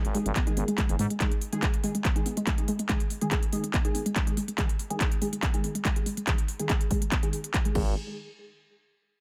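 Driving peak-time techno at 142 BPM in a straight 4/4, this hypnotic, relentless fragment of a longer piece sits in G# minor over a G#5 power chord before the harmony drops out at 8.0 s. A thick, growling FM bass opens up front and falls away at 1.1 s, returning only for a brief moment near the close. A layered techno kit with smooth hi-hats, handclaps and a crash cymbal plays from the start, pushed through overdrive, and an overdriven, heavy electronic kick enters at 0.4 s and sits prominently alongside it. Aggressive, bright sawtooth rave stabs in detuned unison carry chorus, built-in reverb, digital delay and sidechain pumping, with a filter sweep and a moving notch running across them. A mellow, warbling lo-fi pluck plays the riff with a dusty noise layer, detuned triangle and sawtooth tones, chorus, delay, pumping and its own filter sweep. Light reverb surrounds the mix.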